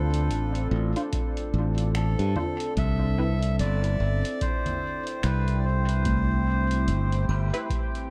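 Hazy and spacious under a light reverb, this short ambient dub excerpt at 73 BPM with a swung 4/4 feel moves from Dm7 to Cmaj7 as a reedy, breathy melodica carries the melody through dub echo over a deep, moody sawtooth pad, muted filtered chord stabs on cassette tape, a buzzing, woody kalimba heard at the start and again from 6.1 seconds, a bright, growly fingered electric bass up front, muffled pitched-down congas, finger snaps and hi-hat, and an analog electronic kick entering at 1.1 seconds.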